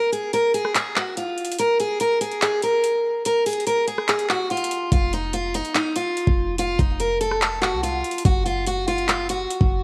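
Hard-hitting and eerie, this short cut from a longer hip hop piece sits in a half-time trap feel. A bright, picked steel-string acoustic guitar carries the melody up front from the very start, its tone colored by cassette tape saturation and tape echo. Beneath it, an electronic trap kit runs throughout with a knocking kick, metallic hi-hats, handclaps and rim clicks. The opening stretch plays as a break until a deep, boomy 808-style bass arrives at 4.9 seconds, its sine tone carrying a noise layer, a fast attack and a mellow decay. Light reverb and digital ambience surround the parts, and the whole recording has the character of a home cassette production.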